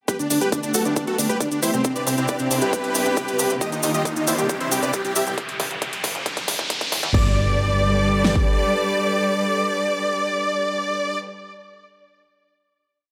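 A huge, detuned supersaw leads this uplifting, soaring trance piece at 136 BPM in G major, its compressed, sidechain-pumped riff of sixteenths over a pedal note in thirds and sixths riding up front with digital delay above lush, distant bowed strings carrying vintage 12-bit sampler grit, while a punchy four-on-the-floor kick and huge snare, metallic programmed hats and crash, grainy hand-played cabasa, a funky plucky analog bass galloping in sixteenths and a background riser and impact drive a build that reaches a final Gadd9 chord at 7.1 s.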